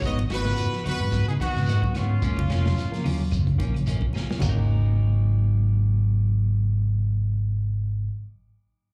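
A punchy, up-front fingered electric bass drives this hypnotic afrobeat cut, joined by a crunchy breakbeat drum kit with dark cymbals and a drum fill at 4.1 s, a grainy, distant shekere, faint congas and woody claves, a dark, very quiet guitar playing arpeggios, clean picked guitar stabs with slapback echo, a brilliant, tight horn section carrying the melody over a clear alto saxophone second line until 3.6 s, and a barky, reedy electric piano with fast tremolo in the background, heard live through a club PA with reverb.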